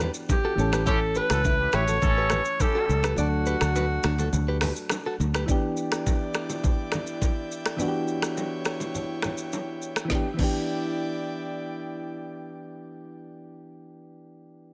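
A mellow, sultry afrobeats excerpt at 104 BPM in E dorian, where a breathy, whispered alto saxophone carries the melody up front with tape echo, backed by a clear, punchy horn section with vibrato, a bright, compressed clean electric guitar riff also touched with tape echo, and a dark, round fingered bass. Soft, chorused electric-piano-like synth keys accompany throughout, while a produced afro-pop kit with a knocking kick, woody snare, smooth hats, rim clicks, finger snaps and shaker sits up front over vintage bongos and congas in the background. After a break at 3.2 s, the guitar and bass stop at 5.4 s, an airy, chorused pad enters at 5.5 s, and the drums and hand percussion fall away at 10.6 s, all within a light reverb.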